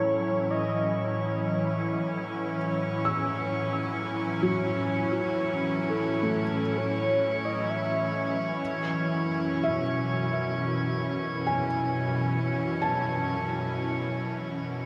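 Floating in free time, this melancholic, reflective ambient excerpt opens with a velvety synth lead carrying the melody until 8.4 seconds, its chorus, delay and vibrato set over a bright, up-front wavetable pad that morphs through detuned sustained chords. A soft, felt-muted upright piano traces delayed arpeggios with audible action noise, while a glassy texture of drifting overtones hovers high above, and at 7.8 seconds a very quiet, nasal, string-like drone enters with a tense edge. The whole excerpt sits in a vast, echoing space drenched in huge reverb, fading out from 13.4 seconds.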